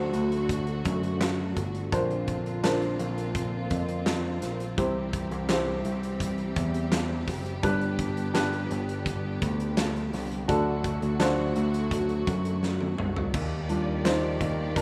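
A clear, worn concert grand piano, lush bowed strings with vibrato and a picked electric bass open this hopeful, uplifting piano-driven pop excerpt at 84 BPM, joined at once by a huge arena drum kit with a punchy kick, fat snare, bright cymbals and handclaps as the chords move from D through Bbadd9, C and G, until a drum fill at 12.6 seconds leads into a grand piano solo over Ebmaj7 at 13.3 seconds, all in a rough home demo mix with light reverb.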